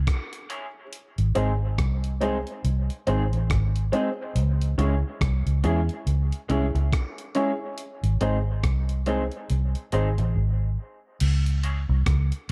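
A round, foam-muted electric bass sits up front in this spacious, deep dub reggae excerpt at 70 BPM in C# harmonic minor, joined by a gritty, pitched-up sampler-style breakbeat kit with a thumpy kick, a slightly broken-up, lo-fi electric guitar with subtle chorus and dub echo, and mellow baby grand piano stabs with audible action noise, also carrying dub echo, as the chords move between C#m and G#, a filter sweep begins at 7.8 s and a break arrives at 10.4 s.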